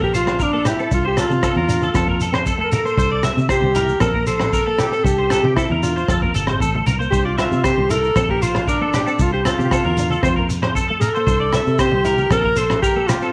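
A straight 4/4 groove at 116 BPM, set by a crunchy, saturated breakbeat kit with tight kick, hi-hat and rim click, carries this joyful, warm highlife guitar band excerpt in C mixolydian, with a round, foam-muted fingered electric bass underneath, grainy shekere from 0.1 s and soft, low-tuned congas from 0.3 s. A bright, twangy picked electric guitar plays accompaniment, while a compressed, fingered second guitar sits in the background playing arpeggios with ensemble chorus and slapback echo. Up front, a breathy alto saxophone with vibrato and slapback echo carries the melody over a cycle moving through Bbmaj9#11, Csus4, F and C13 in a small, lightly reverberant room.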